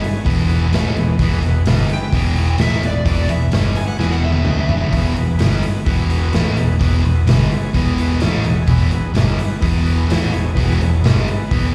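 A live gig heard through the venue's PA fills this short cut from a longer piece, with light reverb and the open ring of a recital hall around the band. It is driving, gritty blues rock with a southern rock lean, moving at 128 BPM in a straight 4/4 in E major and resting on an E chord. A sludgy, double-tracked distorted guitar sits up front with a picked, overdriven riff and slapback echo, while a vintage muted fingered bass gives round, foam-muted low end and a raw garage drum kit, saturated with a rolled-off top and punchy kick, drives hi-hat, snare and toms. Behind them a thick overdriven tonewheel organ holds sustained chords through a slow rotary speaker. From 1.9 to 4.9 seconds a dark overdriven slide guitar plays a melody with slapback echo and analog delay, and a drum fill from 4.0 seconds leads into the next section, where the trio and organ carry on to the end.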